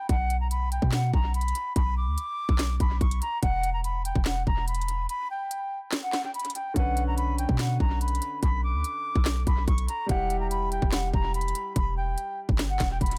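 Echo-heavy and set in a small room, this hard-hitting, dark trap excerpt at 144 BPM in a half-time feel and B harmonic minor sets an airy, straight-toned silver flute melody with analog delay over a deep, boomy 808 bass and an up-front kit of hard-clipped kick, sharp snare, crisp hats and handclaps, moving into a break at 5.1 seconds before a clear, intimate grand piano with audible action noise and its own delay joins at 6.7 seconds as the chords move from Bm and Em to Bmadd9 and back to Em.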